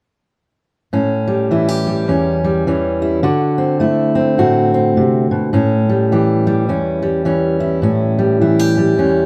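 A moderate large-studio reverb gives this live-in-one-room recording a roomy glow around a full-bodied, up-front dreadnought steel-string acoustic guitar, fingerpicked solo from 0.9 to 9.3 seconds. The mood is rollicking and gritty, an acoustic country blues in A mixolydian at 104 BPM in 4/4 with a swung eighth-note feel. In this short cut from a longer piece, the guitar ranges from E2 to G4 over A7, moving to D7 at 3.2 seconds and back to A7.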